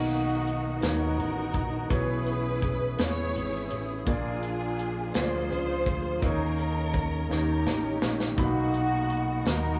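A stone room's moderate reverb and small-room ambience frame this soulful, solemn slow gospel excerpt at 56 BPM in 6/8, where a warm, bowed string section carries the vibrato-rich melody up front over a growly, bright fingered electric bass and a punchy, mid-forward studio drum kit, while a brilliant grand piano with audible action noise and a lightly overdriven tonewheel organ with fast rotary speaker and chorus vibrato sit in the background through chords moving from Bmaj7 to D#7, with a drum fill from 7.3 to 8.4 seconds before the return to Bmaj7.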